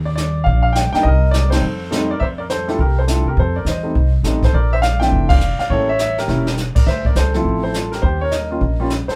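A brisk swing at 206 BPM in 4/4 drives this short, sophisticated and playful jazz piano trio passage in F major, cut from a longer piece. The pizzicato upright bass sits up front with a woody, thumpy tone from its gut strings, anchoring the harmony as it moves from Ebmaj7 through Fmaj13, Bbmaj9#11 and A7b9 toward Dm9 and Eb7. The grand piano carries the melody with an intimate, warm voice, long sustain and audible action noise. Played with brushes, the drum kit brings dark cymbals, a medium-tuned snare and a boomy kick. The band hits shared accents at 1.5 and 5.3 seconds, and a drum fill arrives at 6.3 seconds. Everyone plays live together in a small room whose moderate reverb keeps the sound natural and close.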